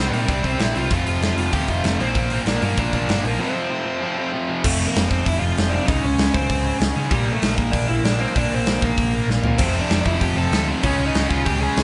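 This rowdy, energetic punk rock cut is recorded as a band playing live in one room, with a light reverb and a slightly muffled top end. A big acoustic rock kit sits up front, with bright cymbals, a punchy kick, a medium-tuned snare and toms driving hard in straight 4/4. Underneath, a hollow-body short-scale electric bass adds a round, amped low end. Three background rhythm guitars play the riff: a compressed, distorted part, a raw overdriven garage part, and a double-tracked overdriven part that drops out at 4.6 seconds and returns at 9.6 seconds, just after a short drum fill. Above them, a dark, smooth, overdriven lead guitar carries the melody, and the band hits a break at 3.4 seconds before the second section moves through chords such as Db5, Bb and F.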